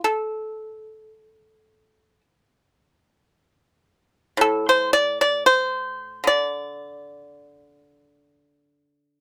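In free time, this brief cut from a longer Chinese traditional piece sets a single pipa alone for its full 9.2 seconds, tuned to A4 = 435 Hz and ranging from A2 to D5. Played with fingerpicks, the pipa sounds bright, dry and percussive, sitting up front in a lightly reverberant room. The mood is elegant and full of longing.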